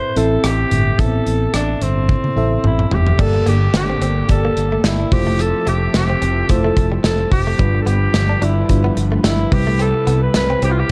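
Nostalgic and glossy, this 1980s-style pop excerpt moves at 109 BPM in 4/4 with a light sixteenth-note swing. A breathy, raspy, growling alto saxophone carries the melody up front over a mellow FM electric piano, a fretless electric bass and an up-front studio drum kit with a tight kick, whose fill from 2.1 to 3.2 seconds leads into the second section. At 3.2 seconds a very quiet, lush detuned unison pad joins, along with a compressed clean electric guitar riff with lush chorus sitting in the background, while chords move from Am through Gmadd9, Fmaj7 and G7 to Cmaj7 in a dark, warm production with light reverb.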